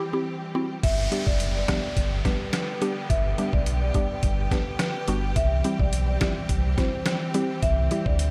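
A straight 4/4 dancehall groove at 106 BPM in G major, summery and bouncy, kicks in at 0.8 seconds on a gritty, compressed, pitched-down, sampler-style drum kit with a thumpy kick, medium-tuned snare, hi-hat, rim click and crash sitting up front, under a deep sine sub bass with octave. Before that, a woody, round FM synth pluck with chorus and phaser and a lush, bright bowed string section with sidechain pumping open the cut on a C chord. A dark, smooth marimba melody with tape echo then rides over the shift from G to C at 5.4 seconds, while an electronic downlifter sits in the background and light digital ambience surrounds the short fragment.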